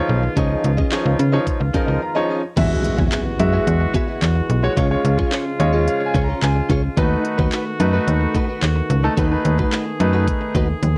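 An upbeat, carefree dance-pop excerpt opens with a clear, intimate concert grand piano and distant, mellow brass chords, both pumping with sidechain and tinted by cassette tape, over a snappy, metallic FM slap bass and a bright, direct clean electric guitar riff thickened by ensemble chorus, while a layered electronic pop kit with a knocking kick, crisp hats, handclaps, toms and crash drives ahead, joined by a background impact at 2.6 seconds, piano fills, and a closing drum fill at 10.8 seconds, all in a lightly reverberant home-cassette sound.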